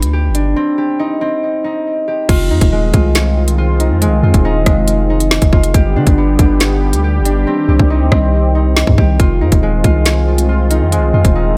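A cold, ominous drill excerpt set in digital ambience with a half-time feel, opening on ringing, fingerpicked concert harp arpeggios with delay over a deep, sine-toned 808-style bass that has a fast attack and a long, mellow decay. The electronic drum kit, with its hard-clipped kick, woody snare and crisp hats, sits up front alongside harp and bass, then falls silent from 0.6 to 2.3 seconds. At that point a smooth, detuned sawtooth pad with chorus enters on soft-attack chords, and later the hi-hats briefly drop out while the harmony moves through G, Cm and Fm7.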